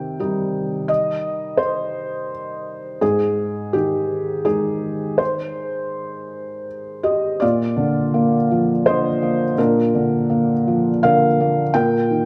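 In a rubato triple metre with uneven beats, this hopeful and intimate neoclassical minimalist fragment, cut from a longer piece, features a solo felt-muted upright piano, mellow and soft and placed up front, moving from minor-tinged harmony into a new section at 7.4 seconds, all framed by a moderate recital-hall reverb.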